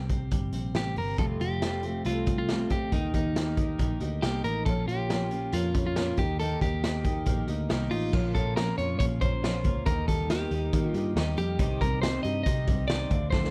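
A small room's ambience surrounds this short cut from a longer piece of jangly indie pop, moving at 138 BPM in a straight 4/4 with a nostalgic, youthful mood. Up front, a raw garage drum kit sounds gritty and saturated, with a punchy kick, a medium-tuned snare, dark cymbals and a pumping room sound, and a drum fill arrives at 13.3 seconds. Beneath it, a vintage foam-muted picked electric bass stays round and amped, while a bright, twangy twelve-string electric guitar plays arpeggios with slapback echo from the background. The lead melody comes from a clean, compressed electric guitar that enters at 0.8 seconds, sitting up front with its own slapback echo. At 1.2 seconds a fingerpicked twelve-string acoustic guitar adds a full-bodied, shimmering, octave-doubled accompaniment as the harmony moves through chords such as Fadd9, Eb, Bbm and, at the close, Cm.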